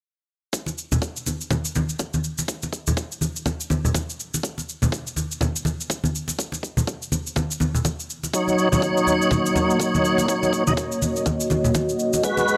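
Afro house with a warm, hypnotic pull, cut from a longer piece and set in a swung 4/4 groove. From 0.5 seconds a punchy, tape-warm electronic kick sits up front alongside a layered electronic shaker, both re-recorded in a large room. Bright, low-tuned acoustic congas with a thin skin, captured in a small room and placed up front, join just after. At 8.3 seconds the harmony arrives on an Ebm7 chord, carried by a deep, moody analog pad of detuned sawtooth and triangle tones with a sub octave, slow attack, chorus and sidechain pumping. Over it, a full, lightly overdriven tonewheel organ plays stabs through chorus vibrato, a slow rotary speaker, sidechain pumping and analog delay. The sound is dry and gritty, with light reverb and a hardware character.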